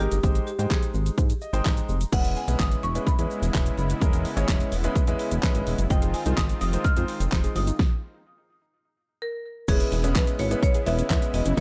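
Punchy, up-front electronic drums with fat snare, metallic hats, handclaps and shaker drive this summery, euphoric dance-pop excerpt, where a dark, glossy chorused synth bass and a clear, polished baby grand piano pump under sidechain, a smooth marimba melody trails tape echo, a soft detuned supersaw pad arrives at 2.1 s, a gentle round pluck adds chorused arpeggios from 5.9 s, and a stop at 7.8 s sits within a digital ambience.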